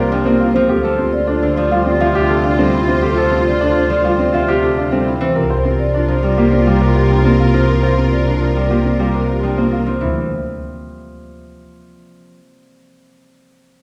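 Soft-mallet marimba carries a mellow, round melody through this meditative yet urgent minimalist classical pattern piece at 103 BPM in D minor, over present, short-sustain grand piano arpeggios, bright, ringing fingerpicked Celtic harp, a distant clarinet second line, a clear bowed string section holding smooth sustained chords with vibrato, and a rich, up-front bowed double bass, heard from further back in a wet recital hall, with the harp ringing on alone from 10.3 s until the fragment ends at 12.4 s.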